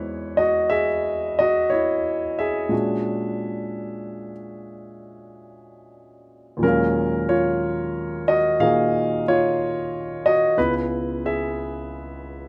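A warm, intimate grand piano carries this short solo jazz passage alone, sitting up front in a natural sound where the action noise of the instrument is audible. The mood is smoky and swinging, set at a slow 61 BPM in 4/4 with a swung eighth-note feel that bends freely in rubato. In Eb minor and tuned to A4 = 439 Hz, the piano spans from Db2 up to F5 across the 12.5 seconds. The harmony moves from Emaj9 through Bb7alt, settling on Ebm11 at 6.6 seconds before turning to Dbm7 at 10.6 seconds. A light reverb gives the room a gentle glow around this fragment of a longer piece.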